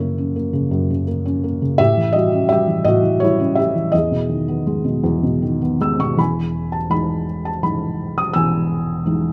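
Classical solo piano music in a lyrical vein, this short fragment from a longer piece has a tender, warm mood. A felt-muted upright piano plays alone across the full 9.3 seconds, moving in a flexible, rubato three-beat feel and spanning a broad range from deep bass to the upper treble. Its thick felt gives the tone a dark, mellow softness, and the close, detailed microphones place the instrument up front, so the audible action noise adds an intimate, physical presence. The harmony moves from F#7 to A7 and settles on Emaj7 at 3.9 seconds, and a new section begins at 6.2 seconds. A light reverb surrounds the piano, and the instrument is tuned slightly above standard pitch, with A4 at 441 Hz.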